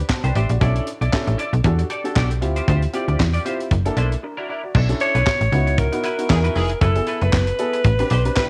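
Early-eighties boogie funk at 116 BPM with a swung sixteenth-note feel, this short, danceable cut from a longer piece has a slick, polished groove that settles into B minor after a brief break around 4.7 seconds. A snappy, up-front FM bass with a metallic attack anchors the low end, while a tight funk kit with a high-tuned snare, tight kick, hi-hat, handclaps and crash cymbal drives the beat from a small-room sound. A natural-toned baby grand piano supplies chordal accompaniment through rich minor-eleventh harmonies and an altered dominant chord, and a bright, clean, compressed semi-hollow guitar plays a picked riff coloured by analog chorus. At 5.0 seconds a breathy alto saxophone enters with a clear, subtone jazz melody touched with vibrato, and a present horn section joins at 6.3 seconds with a jazz-style second line. The piano, guitar, drums, saxophone and horns carry a cassette-tape character, and the whole piece sits in studio reverb with the intimate feel of a home recording.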